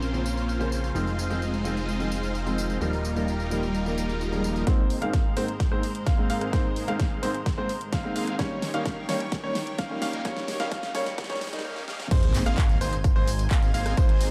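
This is an uplifting, euphoric slice of festival progressive house in a straight four, cut from a longer piece. A huge, detuned supersaw riff runs throughout, bright and full-bodied with phaser, a low-pass filter, dub echo and sidechain pumping, over a lush, chorused unison pad that sits in the background, while a clear, worn baby grand piano adds open, long-sustained accompaniment and a fat, saturated analog bass anchors the opening. Just after 4 seconds very quiet electronic swells and risers creep in, and at 4.7 seconds the build-up begins: the bass drops out, a punchy, up-front electronic kick enters, a brilliant grand piano with audible action noise plays arpeggios, and drum fills from a big-room kit with a huge snare, claps, hi-hat, tambourine and crash push forward under filter sweeps. At 12.1 seconds the drop arrives with an impact and the thick bass returning beneath the pumping supersaw. 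The production is dark yet warm, with light reverb and a high-pass filter shaping the overall sound.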